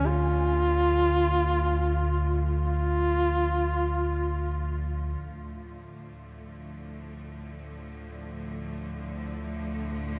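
A warm duduk with vibrato sings a brief folk-style solo melody through tape echo until 4.5 seconds, up front over a deep, ominous, rumbling synth drone with its own reverb and a clear, intense bowed cello section that fades out over the first 5.2 seconds, before a filter sweep shapes the drone for the rest of this dark, cavernous ambient fragment set in a vast, echoing cathedral space with cassette tape grain.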